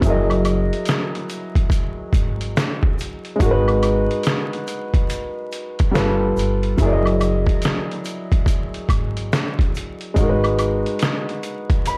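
Lo-fi hip hop with a nostalgic, melancholic mood, built on extended chords and a swung 16th-note feel, heard in a short cut from a longer piece. An intimate upright piano with audible action noise and long sustain sits up front through cassette tape coloring, while a woody, dark pizzicato upright bass with tube saturation plays until 10.8 s beneath a compressed, pitched-down sampler-style kit with a thumpy kick and a medium-tuned snare re-recorded in a large room. A close tube shaker, woodblock and group handclap stay in the background, and the dry, gritty hardware sound carries vinyl crackle in a small room.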